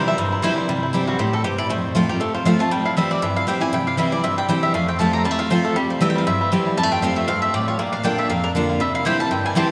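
Swung eighth notes drive this rustic, virtuosic bluegrass fragment in 4/4, cut from a longer piece. A bright, twangy fingerpicked banjo carries the melody over an up-front, woody, full-bodied dreadnought guitar with old strings, while a mellow, round mandolin adds short stabs at the opening and again from 9.1 seconds. A second, warm double-strung mandolin joins with its own melody at 1.1 seconds, set back in the mix, and the whole group rings out in the long, wet reverb of a cathedral-like hall.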